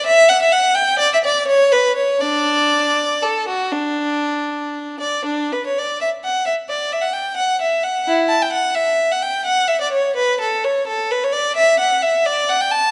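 In a 12/8 with rubato, this excerpt from a baroque-style suite movement for unaccompanied violin unfolds in an introspective, flowing mood, the single bowed violin sounding clear, smooth and even with vibrato as it sits up front from 0.0 to 12.9 seconds, ranging from D4 to A5 and shifting into a new section at 5.3 seconds, all framed by a moderate scoring-stage reverb and a gently rolled-off top end.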